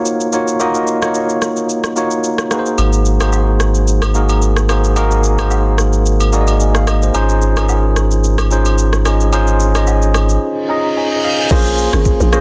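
A worn, slightly out-of-tune tine electric piano sits up front from the opening, its clean tone coloured as if heard through built-in speakers, carrying Ebm7, Ab7 and Dbmaj7/Ab chords in this deep, soulful amapiano cut from a longer piece. The electronic afro-pop drum kit moves at 110 BPM in 4/4 with a 16th-note swing, pairing a deep kick with crash cymbal, rim click and shaker, and its snare is touched by soft clipping. At 2.8 seconds a thick, saturated triangle sub bass enters up front on a sustained Ab1, alongside agogo bells and woodblock placed in the background of a small room. The electric piano plays a fill from 10.4 seconds, and an electronic reverse cymbal joins at 10.6 seconds, leading into the next phrase. At 11.5 seconds a hollow, bouncy FM log drum bass with a noise layer and fast, decaying attack enters, joined by woody padauk marimba stabs with delay, set back in a boxy space. 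The mix is dry, dense and heavily limited in a modern style.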